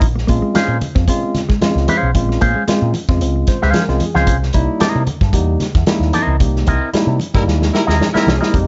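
Hypnotic and driving, this straight 4/4 funk excerpt at 113 BPM rides a Bbm9 to C7#9 change, with a twangy, clean envelope-filtered electric guitar up front over a dark, round picked bass through the same effect, a punchy vintage drum kit in a pumping small room and very quiet low-tuned congas, while a fingered, compressed electric guitar plays a tremolo-shaded riff in the background until 4.2 seconds, a worn, slightly out-of-tune tine electric piano stabs throughout and adds a fill at 3.2 seconds, and a horn section with light vibrato joins on a second line at 7.3 seconds as the band accents and the drums fill, all in light reverb with a rolled-off top.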